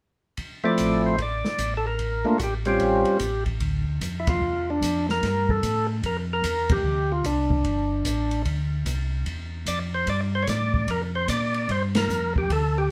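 A wet, small-room sound captures this soul jazz organ trio playing live together, a smoky, late-night swung cut taken from a longer piece. Both tonewheel organs sit up front through slow rotary speakers: a percussive, lightly overdriven voice with key click and third harmonic percussion carries the melody, while a round, mellow, clean voice plays the bass beneath it. An acoustic kit with dark cymbals, a medium-tuned snare and a boomy kick plays hi-hat, ride, snare and kick as the band moves through minor seventh and ninth chords and hits shared accents at 4.2, 6.6 and 11.9 seconds.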